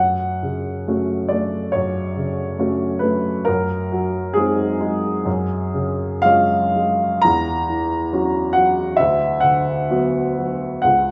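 The rhythm moves in a flexible, rubato 4/4, the pulse stretching and relaxing at a slow, unhurried pace. This is a romantic classical nocturne for solo piano, mournful and yearning in mood, cut from a longer piece. A warm upright piano carries the whole 11.1 seconds alone, its woody, natural tone sitting up front, with long sustain and a range spanning C#2 to A#5. The harmony moves from F# minor through G#7 and C# over an F# bass, then to F#7 over E, arriving on B minor with D in the bass as the passage ends. A recital hall reverb with a 1.6-second decay surrounds the instrument, giving it a spacious, resonant bloom.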